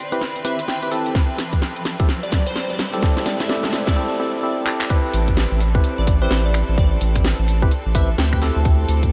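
Soulful and skippy, this two-step UK garage cut moves at 128 BPM in A minor with a swung 16th-note feel, bathed in a huge, dreamy ambient reverb. It opens on a build-up where a hollow, percussive organ stab with chorus and delay and a background violin section holding sustained chords with light vibrato and sidechain pumping outline a rootless Am9 moving to Cmaj13. A garage drum kit of finger snaps, handclaps, bright hi-hats and a cracking snare plays a fill through the build, joined by an electronic riser in the background and a glassy, crystalline wavetable pluck carrying the melody with detuned chorus, delay and a filter sweep. A tight, up-front electronic kick arrives at 1.1 seconds, and the drop lands at 4.9 seconds, with a deep, saturated sine sub bass entering at 5.1 seconds. The chords return to Am9 and shift to D7sus4 near the end of this excerpt.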